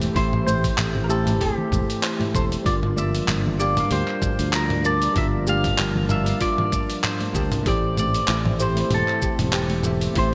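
A bright, 1980s-style digital sheen and a moderate, lush hall reverb frame this wistful sunset chillout excerpt, cut from a longer piece and moving with a gently swung sixteenth-note feel. A bell-like tine electric piano carries the accompaniment through delay, while a very quiet, thick unison pad of detuned sawtooth and square waves holds sustained chords with chorus and phaser. Underneath, a growly, punchy fretless electric bass anchors the harmony as it moves from Am7 to Gm7 and back to Am7 at 7.7 seconds. The drums have a dusty, gritty sampler character: handclaps, hi-hat, shaker and toms with gated reverb, a thumpy electronic kick joining at 0.2 seconds, and very quiet, soft-handed congas. Also entering at 0.2 seconds, a twangy electric guitar at the edge of break-up plays the melody through phaser and delay, while a shimmering steel pan, struck with hard rubber sticks, adds distant arpeggios with its own delay.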